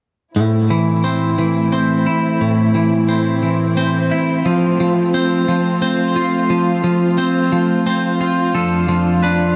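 A bright, compressed twelve-string electric guitar plays arpeggios up front from 0.4 s, soaked in spring reverb and tape echo, while a rich studio string section holds biting, vibrato-laden chords beneath it. This cinematic, cathartic rock excerpt moves slowly at 59 BPM in 6/8 in A minor, shifting from Am to F and then Dm/F, all set in a huge ambient reverb. At 8.5 s a quieter, twangy electric guitar slips in with a few high arpeggiated notes through tape echo.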